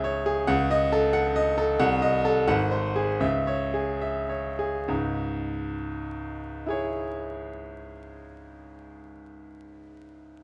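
Classical virtuoso piano study in C# minor and 6/8, agitated and stormy, where a clear, natural, up-front solo grand piano plays with rubato at 67-92 BPM, moving through D#m7b5/C#, Cdim7 and G#7 to C#m while slowing from 1.1 to 4.9 seconds before a new section begins at 4.9 seconds, all in a dark production with moderate scoring-stage reverb and vinyl crackle, cut from a longer piece.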